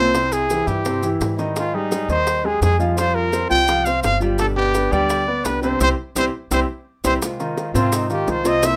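A breathy, whispered trumpet with vibrato carries the nostalgic, sultry melody up front in this Cuban son and guajira excerpt, over a dark, boxy fingerpicked nylon-string guitar, clear piano arpeggios and a woody pizzicato upright bass, with close, grainy maracas and tight high-tuned bongos in the background, a band accent at 5.8 seconds, and a trumpet solo from 7.2 seconds in a moderate studio reverb.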